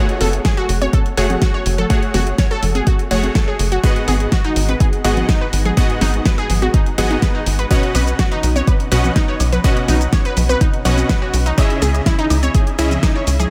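A bright, detuned unison pluck and an airy supersaw stab open this dreamy, bittersweet progressive house excerpt at 124 BPM in F# dorian, the pluck spinning arpeggios with a vintage 12-bit sampler grit while both synths breathe with sidechain pumping and tape echo. A deep house kit of hi-hat, shaker and fat snare arrives at 0.1 s, and the tight, nasal sequencer bass joins at 0.2 s alongside congas and woodblock that sit back in a large room. A deep, up-front electronic kick lands at 0.4 s and anchors the groove, while the punchy sawtooth bass drives underneath with a fast, decaying filter pluck. The harmony moves through F#madd9, G#m7, Badd9 and C#madd9, giving the short passage a gently yearning lift. Digital ambience surrounds the mix, and the tape-warm drums, re-recorded in a small room, lend the electronic textures a grounded, physical edge.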